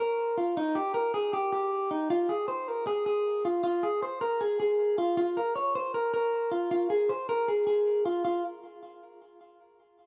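A lone electric guitar, slightly broken-up, picked and compressed, sits up front in a rough home-demo mix with light reverb, playing a restless, bittersweet indie pop solo from the start until it stops at 8.4 seconds in this fragment cut from a longer piece.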